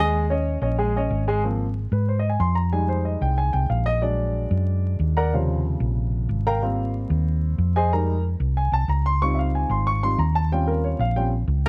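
A deep, up-front concert grand piano carries this joyful, festive salsa excerpt, taking a solo from 1.4 s over lush extended chords bathed in plate reverb. A dry, woody koto plucked with fingerpicks sounds the opening melody before the piano takes over, while a round, punchy hollow-body electric bass holds down the low end throughout. Light reverb and a layer of vinyl crackle give the recording a worn, vintage sheen.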